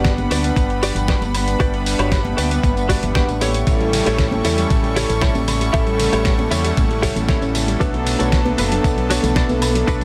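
A smooth, warbling analog pad sits up front in this sunny, feel-good nu-disco excerpt, its detuned vintage tone thickened by chorus and digital delay as it moves from Gmaj7 to A7 and then Bm7 at a straight 116 BPM in 4/4. Beneath it, a gritty, thumpy electronic kick and a dusty soul sampler-style kit with a fat snare, hi-hat, ride, tambourine and woodblock drive the groove, both compressed and touched with studio reverb. A fingered electric bass runs through an envelope filter for a dark, round, punchy line that pumps with the sidechain, as does a chamber violin section holding soft, sul tasto chords with light vibrato in the background. A clean, direct-recorded electric guitar picks a compressed riff with analog chorus and delay, while very quiet congas played with soft hands come in at 0.2 seconds. From 3.7 seconds a gentle, nasal pluck adds very quiet arpeggios, leaving the whole mix fairly dry.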